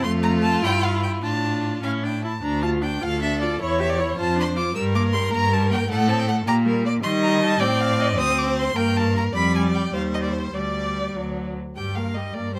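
A restless 6/8 lilt, pulled about freely with rubato, drives this dramatic classical-period movement for string quartet, cut from a longer piece. The first violin carries an intense, smooth-topped melody with vibrato, while a focused second violin, set more distantly, plays a supporting line and a clear viola fills in the accompaniment. Up front, a rich cello with a soft attack and expressive portamento anchors the bass, and light reverb surrounds the ensemble as the harmony shifts from D minor into G minor around 7.0 s.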